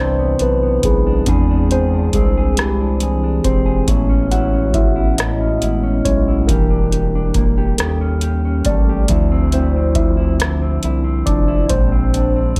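A slow 6/8 pulse at 46 BPM, counted in dotted quarters with a straight feel, is set by a booming analog drum machine that enters at 0.4 s with a deep kick, metallic hi-hats and rim clicks, up front with a small-room character. Beneath it, a round analog bass sits low and sustained, its square- and sine-based tone evolving with a wave-folded edge and a fast attack. A mellow tine electric piano, clean and direct under a phaser, takes the solo role across the whole passage while also carrying the harmony. A dark, fingered electric guitar with vibrato adds a quieter second line. The late-night, yearning R&B mood comes through rich chords such as Cmaj9, E7alt, Amaj7 and Dm9, ending on Bb9. The dry sound keeps every part close in this short fragment of a longer piece.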